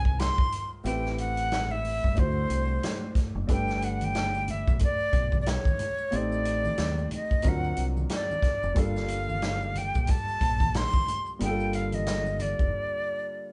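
A lightly reverberant, live-in-one-room sound with a softened top end frames this smoky, nocturnal jazz-hop excerpt in G minor at 91 BPM, its 4/4 groove carrying a lazy swing on the sixteenths. A breathy, bright flute takes the melody up front from the start, close-miked with vibrato and a soft, expressive attack, moving between C5 and C6. Beneath it a dark, mellow grand piano plays the harmony with long sustain and audible action noise, its boxy, intimate tone drifting through chords such as Am9, D9, Gadd9, Am7b5, D7alt and Gm9. A deep, round fingered electric bass and a punchy vintage acoustic kit of kick, medium-tuned snare and hi-hat hold down the low end, with maracas and congas joining in the background at 3.5 seconds. Bass, drums and percussion drop out at 12.7 seconds for a short break, leaving flute and piano to carry the piece until it cuts off at 13.5 seconds.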